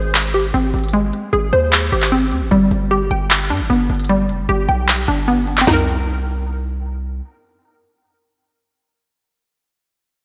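A half-time trap groove at 152 BPM in C minor drives this dark, hard-hitting hip hop excerpt: a produced electronic kit with a sharp snare, crisp hats, handclaps and toms plays until 5.8 s; a punchy, heavy sine 808-style bass with a noise layer booms until 7.2 s; and a hollow, bouncy, detuned square-wave pluck spins bright arpeggios through chorus, low-pass filter and analog delay until 9.7 s over Abmaj7, G and Cm7, with the whole mix soaked in a lush hall reverb for a dreamy sheen.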